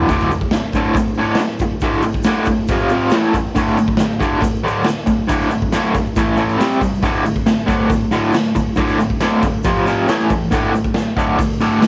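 Garage rock with a rowdy, raw energy, this short excerpt cut from a longer piece drives along at 138 BPM in a straight 4/4. An overdriven electric guitar, picked and double-tracked, sits up front with a bright bite, its riff running from 0.0 s to the end and colored by tremolo and cassette tape. The acoustic drum kit enters at 0.1 s with hi-hat, a punchy kick and a medium-tuned snare, sounding saturated and gritty in a bright stone room that pumps around it, its rolled-off top also carrying the cassette tape character. An egg shaker, grainy and band-limited with a vintage feel, ticks along in the background. The riff moves through power chords on D, F, A and C, giving the whole thing a raw, homemade feel with light reverb and a touch of studio ambience.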